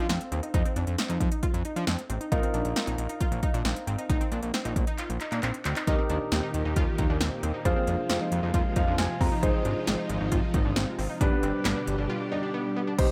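A cool, nocturnal synth-pop passage at 135 BPM opens on an intimate grand piano with audible action noise, a round, detuned sawtooth pluck playing arpeggios through chorus and tape echo, and a fat, saturated analog bass sitting up front, joined at once by a punchy deep house kit of kick, snare, smooth hi-hats, handclaps and crash. After a drum fill, a vintage string machine of violas holds bright, slow-attack chords from 5.9 s, and the piano adds a fill around 8.5 s as the harmony moves from Eb through Fm and Ab6 to G. The cut closes on a break near 12.1 s, all set in a moderate studio reverb.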